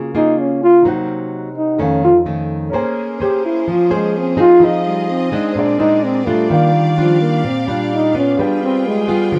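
This short cut from a longer bossa nova piece opens with a fingerpicked, classical-style nylon-string guitar up front and a mellow, vintage-sounding grand piano sitting in the background. At 0.2 s a dark trombone takes the melody as a jazz-style solo, up front, with light vibrato, scooped notes and a smooth top. The tempo is 128 BPM in 4/4 with a straight feel, and the harmony in F minor moves through rich extended chords from Gbmaj9 to a closing G7b9. At 2.7 s a bowed symphonic string section adds clear, lush sustained chords, held low in the mix. The mood is intimate and melancholic, and the band plays live in one room with moderate studio reverb.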